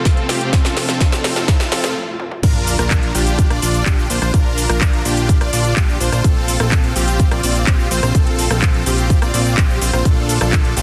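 Uplifting and triumphant, this festival progressive house passage opens on a short build-up where veiled, muted strings sit in the background under a huge, detuned supersaw riff with dub echo and sidechain pumping, a very quiet riser and sub drop, a punchy up-front electronic kick and a house drum kit with cracking snare and metallic hats playing a fill, then after a brief stop the drop lands at 2.4 s as a fat, evolving analog bass enters, the mix pressed into a dense, heavily limited master with light digital reverb.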